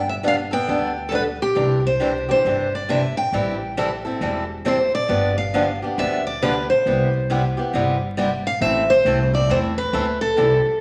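A lead steel-string acoustic guitar, bright and picked with fresh strings, opens the excerpt at once on the melody, sitting up front over a pizzicato upright bass and a second picked steel-string guitar that joins at 0.2 seconds. This is charming, lively acoustic string swing in the jazz manouche style, moving at 136 BPM in 4/4 with a moderate swing on the eighth notes. The accompanying guitar has a boxy, parlour-style character and also sits up front, while the bass sounds woody and thumpy, with a dark gut-string tone beneath them. The harmony moves through Gadd9, Cadd9, Am7, G7 and Cmaj7 before shifting to A minor at 8.6 seconds for a brief new section. A large, reverberant studio space and a layer of vinyl crackle give the recording a vintage feel, and the clip is cut from a longer piece.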